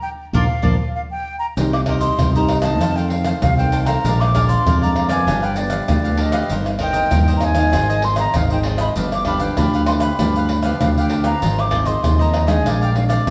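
A straight 4/4 samba and choro groove at 98 BPM in C minor drives this lively, yearning passage cut from a longer piece, where an airy wooden flute with vibrato and a crisp attack carries the melody over a picked cavaquinho, a fingerpicked classical nylon-string guitar in the background, a bright, punchy fingered electric bass up front, and soft-handed surdo, egg shaker, pandeiro and tamborim with a vintage, band-limited tone, the band opening on a shared accent before settling into a progression from Cm7 through G7 to Ab69 and Bb9, all heard live in one room with a stone reverb.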